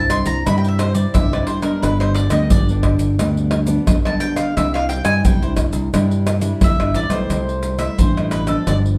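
Joyful and sunny, this short cut from a longer samba-choro piece moves at a straight 88 BPM in C major, with a round, double-strung picked mandolin carrying the melody as a solo through 7.3 seconds over a fingerpicked classical nylon-string guitar, a direct, warm fingered electric bass, and up-front maracas, pandeiro, tamborim and deep surdo struck with hard hands, all set back in a wet studio reverb as the chords pass from C through G and Cadd9 to a C6 that opens a new section.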